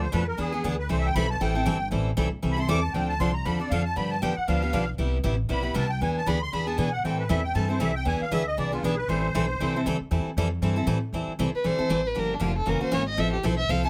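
A reedy, shimmering musette accordion leads this fiery, virtuosic jazz manouche excerpt at 234 BPM in A minor, playing up front until 9.8 s over a bright, full-bodied picked dreadnought guitar with audible finger squeak and a woody, thumpy pizzicato upright bass on gut strings. At 11.6 s a dark bowed violin takes the melody, expressive with vibrato, portamento and a smooth top. Close, detailed microphones and light reverb frame the swung playing.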